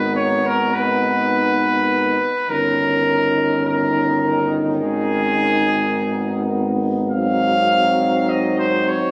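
From the first moment, a clear cornet sings a tender, serene, hymn-like melody up front at a slow, rubato 52 BPM in 4/4, while a dark, distant French horn section holds a second line in the background, a punchy trombone and a vintage-toned euphonium with light vibrato fill the accompaniment, and a mellow, smooth-topped tuba anchors the bass through G#m, D#7/G, G#m and G#7 in a 9.1-second fragment of a longer classical brass band piece, captured on a phone in a reverberant scoring stage.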